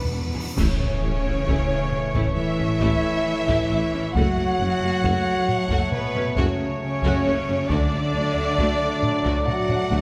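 A mellow French horn section holds sustained chords at the heart of this adventurous, majestic cinematic orchestral cue, cut from a longer piece, while a warm, expressive violin section sings the melody over a rich second violin line, a close viola accompaniment, and a focused cello section with rich double basses, mellow tuba and a tight trombone section beneath. A close-and-dry timpani fill and a huge, bright cymbal swell open the passage, and at 0.6 seconds the band hits an accent with dark clash cymbals and concert bass drum as heavy-stick taiko drums and distant, roomy trumpet stabs join in. The impact rings out until 4.1 seconds, and the harmony moves from A to F#m and then to D at 7.7 seconds, all within a moderate concert hall reverb.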